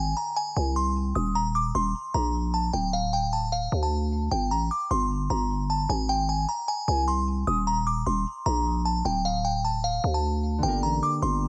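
A crystalline FM synth bell carries the melody up front, its chorused, filtered notes striking quickly and decaying over a growling, buzzy 808-style bass in this dark, menacing half-time trap cut from a longer piece. The dry sound keeps both parts present throughout. At 10.6 s a mellow, thumb-plucked concert harp enters softly underneath, ringing over the final minor chord.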